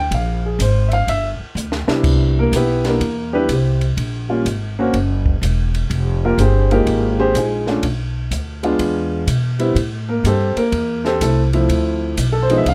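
Jazz piano trio in a swinging 4/4, heard as a cut from a longer piece, with a woody, vintage upright piano up front over pizzicato steel-string upright bass and a dark, smooth cocktail kit with a high-tuned snare and punchy kick, which plays a fill at 1.6 s before the piano takes a solo from 2.0 s through rich chords such as Fm11 and E7b9, all captured with close, detailed microphones and little reverb.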